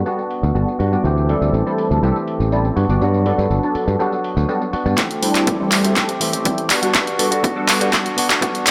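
Feel-good and sunny, this short cut of filtered disco house pairs a funky, detuned sawtooth polysynth comp with chorus and phaser and a twangy, clean picked guitar riff, both pumping under a low-pass filter, over tape-warm analog drum-machine handclaps, hi-hat and tambourine, a growly, bright fingered bass, and an overdriven electronic kick that arrives at 5.0 seconds for a build-up and drum fill, all set in an echo chamber reverb as the filter sweeps across Gmaj7 and D9sus4.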